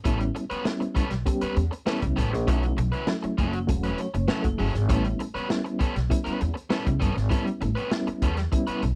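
A biting, overdriven electric guitar opens this playful funk excerpt, picked and dark, joined almost at once by a woody, bright pizzicato upright bass up front and a crunchy, saturated breakbeat kit with a tight kick, medium-tuned snare and hi-hat. A mellow, reedy electric piano with fast tremolo punches out stabs over a straight groove that moves from A9 to B9sus4 and back, and it slips in a fill from 3.7 to 4.9 seconds. The sound is dry and close, in the manner of a 1970s studio recording, with the drums' rolled-off top giving the whole a vintage grit.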